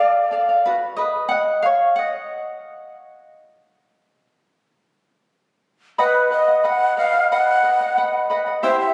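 This festive yet wistful Andean folk fragment, cut from a longer piece, opens with a brief breathy note from the cane quena over the fingerpicked charango, whose shimmering double strings then carry on alone until 2.9 seconds. Both return up front at 6.0 seconds: the quena plays the melody with vibrato and a crisp, chiffy attack, and the charango accompanies it with some octave-doubled strings. The sound is a phone recording in a room, bathed in a wet, long reverb.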